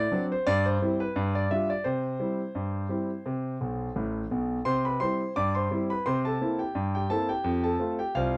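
A clear concert grand piano plays solo through this brief, jaunty ragtime cut from a longer piece, its deep bass and long sustain placed up front in a lightly swung two-beat feel. A playful piano fill runs from 3.6 to 4.7 seconds, leading into a second section. The sound is natural, with light reverb and a dark production.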